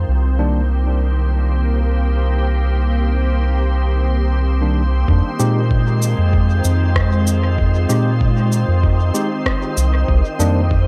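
A deep, round dub sub bass sits up front throughout this spacious, meditative ambient dub excerpt at 96 BPM in 4/4, moving under a pure, organ-like pad with ensemble chorus that holds sustained chords through Cm7 and Fm7 while a filter sweep runs across its first 5.1 seconds. A bright, clean tine electric piano drops a brief stab at 0.4 seconds before returning at 4.6 seconds with dub-echoed stabs. At 5.1 seconds a muffled, thumpy, pitched-down kick enters, and from 5.4 seconds an echoing shaker and rim click and a faint, breathy wind-like tuned noise layer fill out the echo-heavy mix.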